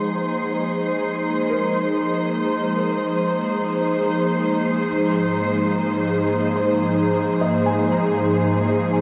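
A breathy, detuned pad with chorus sits up front on sustained Ab7 and Bbsus2/Ab chords, alongside a faint felt-muted upright piano playing intimate arpeggios with audible action noise, a calm organ-like sine drone, and a wind-like tuned noise texture, all floating in a serene, weightless ambient piece in Ab major at 71 BPM, soaked in a huge 8.6-second reverb across this 9-second fragment of a longer work.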